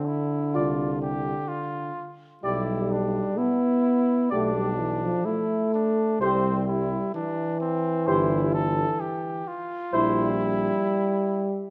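A classical brass quintet excerpt in C major at a stately 64 BPM, noble and warm in mood, in which a mellow trumpet with light vibrato carries the melody over an up-front, dark euphonium, joined at 0.5 s by a punchy, distant flugelhorn second line and a smooth-topped French horn in the background, with a roomy tuba bass entering at 0.6 s, the ensemble set in a recital hall's reverb as the harmony moves from Dm7/C through G/B to C.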